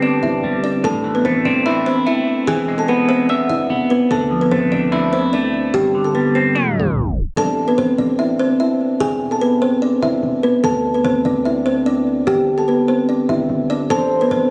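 A half-time hip hop groove at 147 BPM in A minor sets a dark, hard-hitting mood, anchored by a punchy, heavy 808-style bass with a fast attack that decays under a woody, ringing kalimba melody, filtered and up front throughout this cut from a longer piece. A clean, hollow-body semi-hollow electric guitar adds fingered accompaniment through a phaser until a tape stop at 6.6 seconds ends its part at 7.4 seconds, before a soft, round synth lead with chorus, delay and vibrato enters in the background at 13.9 seconds. The mix carries light reverb, digital ambience and compression over a progression moving through Gsus4, Am, E and Dmadd9.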